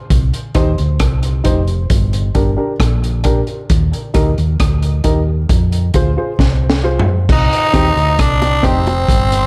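Deep and heavy, this dub reggae excerpt moves at 67 BPM in C minor, built on a crunchy, saturated breakbeat kit with a punchy kick and high-tuned snare, alongside a round, hollow-body fingered electric bass. A worn, woody upright piano drops filtered stabs into dub echo over a Cm, Gm, Eb, Fm progression. After a drum fill, a raspy tenor saxophone with vibrato steps up front at 7.3 seconds, soon joined by a clean, compressed electric guitar in the background and tight, close bongos at 8.4 seconds, all three trailing dub echo within a dark production and light reverb.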